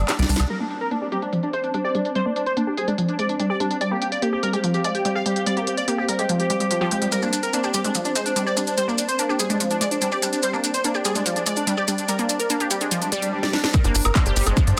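A brief break opens this driving, intense psychedelic trance excerpt at 145 BPM in G phrygian, with a thick, bold unison lead, a bubbling, resonant stepped-filter texture and a tight sawtooth sequencer bass sounding together, while a drum fill and a band accent close the break by 0.5 seconds. The bass then drops out as the bright, vibrato-tinged lead carries the melody through phaser, delay and sidechain pumping, and the detuned texture holds sustained chords with chorus, 12-bit sampler grit and a long filter sweep. A lush, punchy unison pluck repeats a riff through cassette-tape coloring and dub echo, over an overdriven techno kit of cracking snare, smooth low-passed hats, handclaps and woodblock in a small room. Grainy maracas, heard briefly in the break, return in the background at 7.1 seconds, and an electronic swell and another drum fill lead into the drop at 13.7 seconds. There a heavy, overdriven electronic kick lands up front and the sequencer bass returns, with the mix set in a moderate hall reverb under a dense, heavily limited master.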